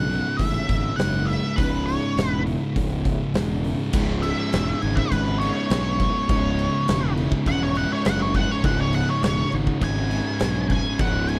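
An octave-fuzz lead guitar, picked and fed through wah and distortion, carries the melody and takes a solo from 3.9 s in this sludgy, hypnotic stoner and doom metal excerpt at 102 BPM in C# minor, set over two dark, thick fuzz guitars churning a low riff in the background (one very quiet), a warm, overdriven fingered fuzz bass, an oversized low-tuned drum kit with a fat snare, punchy kick, gritty saturation and a pumping big-room sound, and a bright, double-tracked overdriven guitar that joins the riff at 3.9 s, all set in a dry mix.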